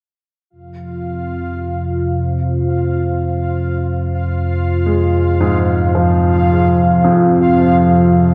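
Ambient music in F minor at a slow 55 BPM in 4/4, this dark, unsettling fragment of a longer piece sits on a single F minor chord throughout. A deep, moody analog pad of detuned sawtooth and triangle tones with a sub octave enters at 0.5 seconds, holding sustained chords with a slow attack, long release and chorus. From 0.8 seconds an up-front analog drone built from sawtooth and pulse waves evolves under a resonant filter sweep, while a bubbling texture of detuned sawtooth with random filter steps and its own reverb hovers more faintly in the same register as the pad. At 4.9 seconds a polished, present grand piano adds low arpeggios with short sustain, carried by tape echo. A wet plate reverb with a 2.5-second tail gives the whole mix an echo-heavy space.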